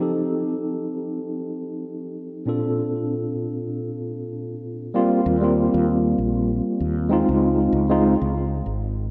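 A bright, clean tine electric piano sits up front with a built-in-speaker character, its chords moving from F7 to Bbmaj9 under a filter sweep through the opening 4.9 seconds, with low-pass filtering and digital delay throughout. This blissful, warm sunset chillout fragment carries a gentle swing on the sixteenths. A dark, round fretless bass with tube saturation joins at 5.3 seconds over Eb69 and Dbmaj9, and the piano drops out at 8.1 seconds, all bathed in a lush hall reverb within a rough, dulled home-demo mix.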